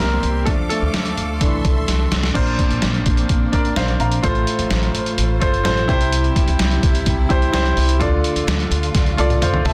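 Warm and uplifting, this piano-driven pop excerpt at 127 BPM in 4/4 opens with a clear, up-front concert grand piano featured as soloist, set over lush, bowed strings held in the background and a woody, pizzicato upright bass, while a gritty, pitched-down trip hop sampler-style kit with a thumpy kick, crash and toms enters at 0.2 seconds and plays fills at 1.9 and 8.9 seconds, all moving through Dm, Bbadd9 and F/A in light reverb with a dense, heavily limited master.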